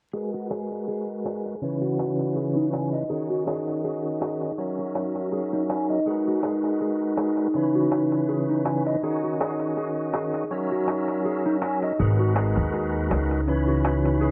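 Swung sixteenths in 4/4 carry this cinematic, melancholic trip hop fragment, where a deep, crisp metal-shell darbuka sits in the background under a thick, lightly overdriven tonewheel organ, up front, with key click and a fast rotary speaker, alongside dark, clean fingered electric guitar arpeggios. A warbling, nostalgic tape-like pad enters with sustained chords at 3.0 s, and filter sweeps run through the organ, pad and guitar as G#m9, C#m7, D#m7 and F#7 cycle. A woody, thumpy pizzicato upright bass arrives up front at 12.0 s, all within a small room, with vinyl crackle lending a lo-fi haze.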